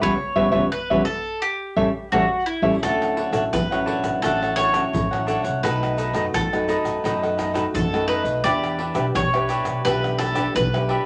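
A festive band accent opens this joyful samba-and-choro excerpt, with a bright, double-strung bowl-back mandolin carrying a second line and a crisp, picked cavaquinho up front, over classical thumb-plucked nylon-string guitar, a growly, woody pizzicato upright bass, and small-room percussion of deep surdo, tube shaker, pandeiro and tamborim, whose drum fill at 2.3 seconds leads into a new section at 2.8 seconds, set in wet studio reverb with tape saturation.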